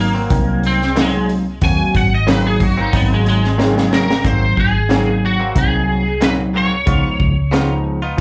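Straight-eighth soul blues at 91 BPM in 4/4, this laid-back, soulful cut from a longer piece sits in Ab mixolydian with a light sixteenth-note swing, moving from an Ab9 chord to Db9 at 6.9 seconds. An electric guitar at the edge of break-up carries the melody up front, its picked, twangy tone slightly broken-up and compressed, wrapped in ensemble chorus and slapback echo; a clean guitar solo runs through the first 4.2 seconds. Beneath it, an overdriven tine electric piano supplies barky, gritty accompaniment through a combo amp, colored by analog chorus and slapback echo, while a vintage foam-muted fingered bass holds down a round, dark low end. A bright, direct-recorded clean guitar adds picked stabs in the background with its own slapback echo. The crunchy breakbeat kit enters at 0.3 seconds with a punchy kick, a high-tuned snare and a saturated, rolled-off top, and a drum fill from 3.6 seconds leads into the second section. 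The whole performance is heard as a live gig through the venue's PA, with light club reverb.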